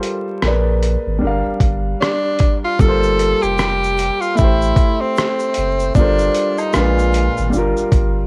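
Lo-fi hip hop in G minor at 76 BPM, this hazy, reflective cut from a longer piece rolls along with a 16th-note swing and the soft grain of a home cassette recording, small-room ambience and vinyl crackle. A warm upright piano carries the chords from the start, woody and intimate with audible action noise and long sustain, moving through harmonies such as Bb7b9, Gm7, Gm11 and Am7. A dusty, sampler-style drum kit plays alongside it, compressed and gritty with a thumpy kick, hi-hat, rim click and shaker, while a deep, mellow sub bass with an added octave enters at 0.4 seconds to hold down the low end. At 2.0 seconds an edgy tenor saxophone takes the lead with a punchy, forceful jazz solo full of vibrato, its tone given a taped patina like the piano's. From 2.8 seconds a very quiet layer of tube shaker, woodblock and group handclap adds saturated texture beneath the upfront piano, drums, bass and horn.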